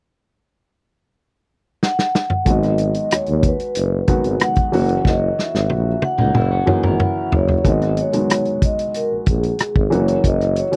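A vibraphone played with soft mallets carries the melody in this bittersweet, silky excerpt of lush 1970s-style soul, its metallic, ringing tone shaded by a slow motor vibrato. It enters at 1.8 s alongside a dry, punchy soul drum kit sitting up front, with a medium-tuned snare, rim clicks, toms and hi-hat, and a rolled-off top, opening with a drum fill before the groove settles at 93 BPM in a straight 4/4. From 2.5 s a tuba takes the bass role up front, its smooth, jazz-style line full of vibrato and scooped notes, while a dark baby grand piano adds mellow, intimate accompaniment with short sustain and audible action noise. The harmony in G# minor moves between G#m7 and F#7, and around the second drum fill a slightly broken-up electric guitar through a small old amp slips in briefly with a picked, compressed riff bathed in lush chorus from 6.2 to 7.6 s. The whole thing sounds like a dry, close 1970s-style studio recording with little reverb.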